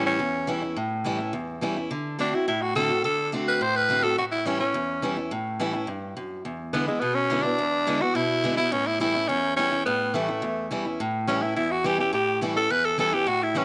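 A lightly reverberant studio sound frames this upbeat, rowdy rock excerpt at 211 BPM in A mixolydian, where a raspy, growling tenor saxophone carries the melody up front with vibrato over a boxy, picked steel-string acoustic guitar whose finger squeaks show through as the chords move from A7 through D7 and E7 back to A7.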